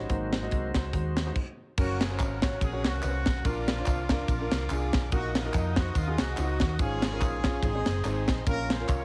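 A swung 4/4 groove drives this soulful, jubilant uptempo gospel excerpt. It opens with a reedy tonewheel organ solo over a clear grand piano, a round, punchy hollow-body electric bass and a tight funk kit with a high-tuned snare, with a stop from 1.4 to 1.8 seconds. At 1.8 seconds a distant horn section carries the melody with light vibrato, joined by tambourine and group handclaps in the background, while the slowly rotating, lightly overdriven organ holds sustained chords, all under light reverb and a heavily compressed, radio-like sound.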